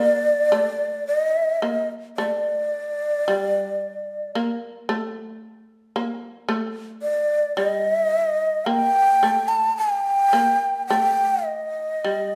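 Heard through a recital hall's moderate reverb, this austere, calm passage of Japanese traditional chamber music, cut from a longer piece, drifts in free rubato as an up-front, breathy bamboo shakuhachi carries the expressive, vibrato-tinged melody with a chiff on its tongued notes, over a quieter second line from a buzzing, percussive, plectrum-plucked shamisen, both sounding across the full 12.4 seconds.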